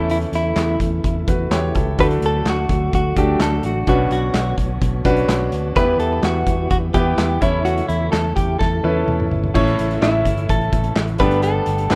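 A straight 4/4 pulse carries this hopeful, uplifting piano-driven pop clip, cut from a longer piece, with a loose indie drum kit of punchy kick, medium-tuned snare, hi-hat, toms, dark cymbals and handclaps sitting up front in a pumping room sound. A fingered electric bass, amped and punchy, anchors the low end, while a clear concert grand piano with deep bass and a smooth, vintage character drives the accompaniment. Up front, a direct-recorded clean electric guitar carries the picked, compressed melody through a delay. Beneath it all, a very quiet, mellow tonewheel organ holds round, dark sustained chords with chorus vibrato, key click and a fast rotary speaker. The harmony moves through A/E, D, Bmadd9, Em and back to A/E before a drum fill from 8.6 to 9.5 seconds opens a new section on A and Gadd9. Light reverb and a rough home-demo mix round out the sound.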